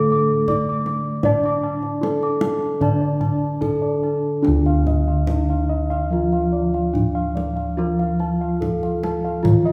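Stately and hypnotic, this Javanese gamelan passage moves at 72-81 BPM in a straight 4/4, with a soft, dark bronze metallophone carrying the melody over a second metallophone whose paired tuning gives shimmering beats, while round bossed gongs play bass and airy, bright arpeggios, a kendang joins at 0.1 seconds with soft hands, and the whole ensemble sounds from further back in a reverberant recital hall as the music shifts into a new section at 4.4 seconds.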